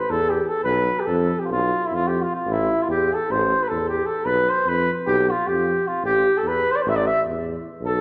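A mellow flugelhorn carries the melody in this bittersweet, virtuosic passage of Balkan folk. It is played in a classical style in A minor, and its roomy tone sits somewhat distant in a resonant recital hall. A warm tuba with light vibrato and a smooth top joins at 0.1 seconds on the bass line, also in classical style. The brisk 9/8 pulse runs at 302 BPM in eighths, and the harmony alternates between A5 and a rootless G7/B across the eight seconds of this fragment from a longer piece.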